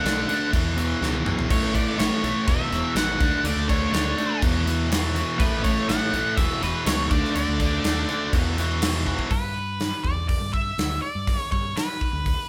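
Light reverb gives this short cut of driving, sunny classic rock the feel of a band playing live together in one room. Up front, a biting, double-tracked overdriven guitar picks out the main riff, sitting over a chord movement that circles through E5, D5 and A power chords. A dark, fuzzed lead guitar carries the melody in a high register, its distorted octave tone threading through the whole passage. Underneath, a fingered electric bass adds a round, punchy low end, while a polished, gated 80s drum kit with a tight kick, medium-tuned snare and bright cymbals fills the airy room sound, playing a fill at 1.0 seconds. Another fill at 9.1 seconds leads into a new section, where the riff guitar drops out at 9.3 seconds and the harmony lifts to G under the lead line and rhythm section.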